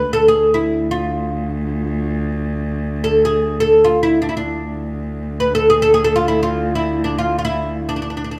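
Closely miked and detailed within a moderate recital-hall reverb, this fragment of an Arabic maqam ensemble piece in free time and D maqam nikriz carries a longing, melancholic mood, as a bright, fretless oud with plectrum-plucked double strings sings the melody up front while a single distant, dark bowed cello holds a low drone with vibrato throughout.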